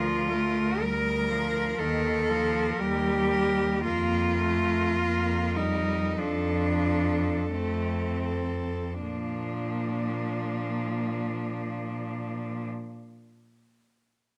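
Serene and lyrical, this classical excerpt for a cello quartet unfolds in Bb major at a rubato 4/4 pace between 39 and 62 BPM, slowing through its opening 9.0 seconds. Four bowed cellos, one player each and all with vibrato, play together from 0.0 to 12.7 s. A rich, smooth and even cello carries the melody in its upper register. A clear, up-front cello shapes a second line just beneath it, and another cello with a focused sound and a smooth top fills in the accompaniment. The bass cello sits up front with a soft attack and expressive portamento, anchoring a progression that moves from Bb/D through Ebadd9 and F before settling on Bb at 9.0 s, where a new section begins. Close, detailed microphones and light reverb give the ensemble an intimate, finely etched sound.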